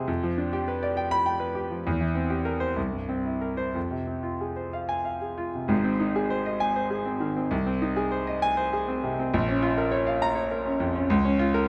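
A clear, natural concert grand sits up front in a moderate large-studio reverb, its deep bass ringing from Ab1 up to C6, tuned slightly low to A4 = 436 Hz. This stormy, agitated virtuoso piano study, cut from a longer piece, moves in a rubato 6/8 at 60-69 dotted-quarter beats per minute, its opening pushing through G7 and C7 harmonies toward F minor. At 5.7 s it settles into Ab major and moves through Bb minor before breaking off at 11.7 s.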